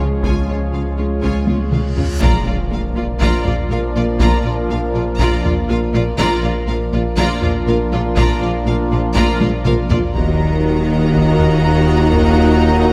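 At a straight 121 BPM in 4/4, this tense, vast cinematic excerpt blends orchestra and electronics, with a lush studio violin section carrying the melody over a second violin line, distant viola accompaniment, very quiet dark trombones and warm horns holding chords, a warbling lo-fi pad with chorus, and a deep bass of double basses, mellow tuba, cellos and a sine-and-triangle sub, while a heavy-sticked taiko ensemble drives beneath, fills at 1.5 and 9.4 seconds, and a huge bright reverse cymbal rises into an impact at 2.2 seconds, all bathed in a wet scoring-stage reverb as the harmony moves from Db to Bb and settles on Ebm at 10.2 seconds.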